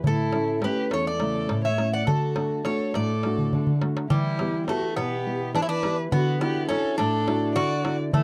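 The Greek bouzouki carries the melody up front, its picked double strings ringing metallic with some octave-doubled courses, ranging from G3 up to F#5. This is a warm, relaxed stretch of Greek folk in a Greek bouzouki band style, moving in 7/8 at 207 BPM counted in eighths with a straight feel in D major, cut from a longer piece. Beneath it, a thumb-plucked classical nylon-string guitar sits up front with the accompaniment, while a crisp metal-shell darbuka keeps the percussion close and plays a fill from 3.4 to 4.1 seconds. A single bowed violin adds a gentle second line with vibrato, soft attack, portamento and expressive phrasing. The harmony moves through A, D, Em and Dadd9 across two statements of the same section, and the dry, close 1970s-style studio sound carries a light reverb that keeps the whole band intimate.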